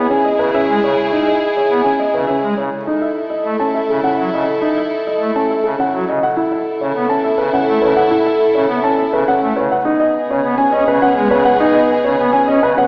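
A dark grand piano carries the melody high above the rest, its action noise audible, while a baby grand with short sustain ripples through arpeggios in this urgent yet meditative minimalist classical piece in 3/4 at 103 BPM, set in F# dorian. A mellow French horn with light vibrato sings a second line, a thick, romantic pipe organ on foundation stops supplies the accompaniment, and a chamber string section holds sustained chords sul tasto with a soft attack as the harmony moves from Emaj7 through F#m7 and B7sus4 to G#m7. The short fragment of a longer work sits in a wet scoring-stage reverb, heard from further back in the room with a small-speaker sound.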